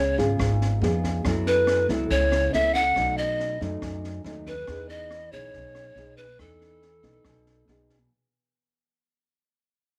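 A breathy bamboo pan flute carries the melody from the first moment, sitting up front over a thumb-plucked nylon-string guitar and a pizzicato upright bass in this short, breezy bossa nova fragment cut from a longer piece. The flute's tongued notes have a soft chiff and gentle vibrato, while the classical guitar's fresh strings give its chords a warm, close presence. Beneath them the bass sounds woody and growly, and from 0.2 seconds an open jazz kit adds rim clicks, a high-tuned snare and a boomy kick in a studio room. The harmony moves from C#7 through F#m7 and B7 to settle on Emaj7, lending the passage a sunny, easy lift. Light reverb and small-room ambience surround the players as the whole clip fades out.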